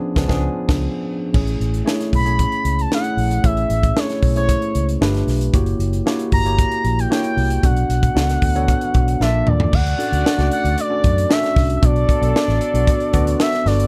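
Slick and nocturnal, this polished 1980s jazz-funk pop excerpt opens on a band accent and rides worn, slightly detuned tine electric piano chords with subtle chorus, a round, foam-muted fingered bass and a gritty, punchy fusion kit with a high-tuned snare, while a smooth sawtooth-and-triangle portamento lead sings up front from 2.2 seconds and a mellow horn section with light vibrato joins after a drum fill at 9.7 seconds, all in a dark, dry mix.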